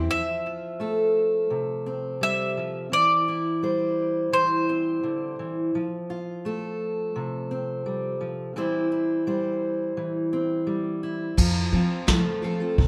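Indie folk with a hopeful, warm glow, cut from a longer piece, built on a bright, fresh-stringed fingerpicked steel-string acoustic guitar that sits up front and carries the F to C/E changes throughout. A double-strung bowl-back mandolin states a short melody through analog delay until 5.4 seconds. At 11.4 seconds the arrangement builds as a picked dreadnought guitar and a woody, thumpy pizzicato upright bass, both heard only in a brief touch at the very start, return alongside a roomy brush kit with dark cymbals and a punchy kick, the drums playing a fill under light reverb.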